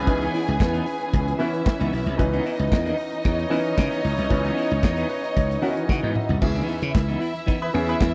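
A driving, glamorous disco cut in C# minor at 113 BPM opens on a C#m9 with punchy, growly slap bass and a tight, dark-toned drum kit of kick, snare, hi-hat, handclaps, toms and crash up front, while short-sustain grand piano, clean hollow-body guitar with tremolo, tight octave-doubled horn stabs, a lush, distant violin section on a second line and very quiet, woody string chords fill out the dry, close 1970s-style room, with a piano fill from 4.8 s and a drum fill at 5.9 s leading into a new section at 6.4 s as the studio strings drop away.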